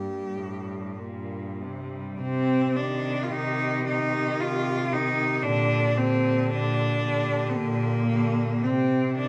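A classical, lyrical passage for a cello ensemble, cut from a longer piece, its mood yearning and solemn as it moves freely in a slow three-beat metre. The melody sits on a single high G in one clear, focused cello, set back in the background despite its close placement, while a second clear cello carries a more prominent line that stands up front. Beneath them, a rich cello supplies the accompaniment from a distance, and another rich cello holds the bass, its tone smooth and even and placed up front. All four are bowed by single players with vibrato, and the harmony moves from G minor to C minor at 2.2 seconds, then through G minor over B-flat before returning to C minor. Close, detailed microphones capture the playing inside a large studio whose moderate reverb lends the ensemble a spacious glow.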